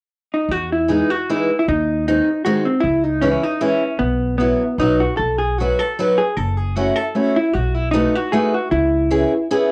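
Charming and nostalgic, this brief fragment of a musette waltz in E major sways at 153 BPM in 3/4 with a swung, rubato feel. A dark, clean, compressed hollow-body electric jazz guitar carries the picked melody, a warm concert-toned steel-string acoustic guitar adds picked accompaniment, and a woody, thumpy pizzicato upright bass on gut strings anchors the low end, all three up front. Both guitars take on cassette-tape colour and plate reverb in a homespun cassette recording with moderate studio ambience, moving through chords from Emaj7 and C#m to B7 and C#m7.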